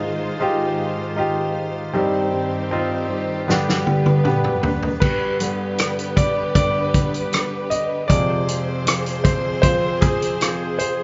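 In a straight 4/4 at 78 BPM, this melancholic, heartbroken pop ballad fragment pairs a bright, brilliant concert grand piano, up front with audible action noise and long sustain, against lush, distant bowed strings holding sustained chords and a fingerpicked flamenco guitar playing arpeggios in the background, before a natural country drum kit with dark cymbals and a fat snare enters at 3.5 seconds with a fill that leads into a piano solo from 5.0 seconds, all set in a moderate large studio reverb with nothing above 7.5 kHz.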